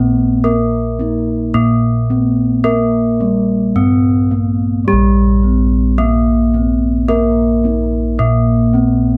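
A straight 4/4 pulse at 109 BPM carries this serene, shimmering Javanese gamelan passage, cut from a longer piece and lasting about 9.2 seconds. A bronze metallophone struck with padded disc mallets plays the mellow, dark melody, while a second metallophone, sounded with a horn mallet, adds a bright, ringing accompaniment up front. Bossed gongs played with padded beaters anchor the bass with a round, beating tone that sits close and dry, all within a small, reverberant room.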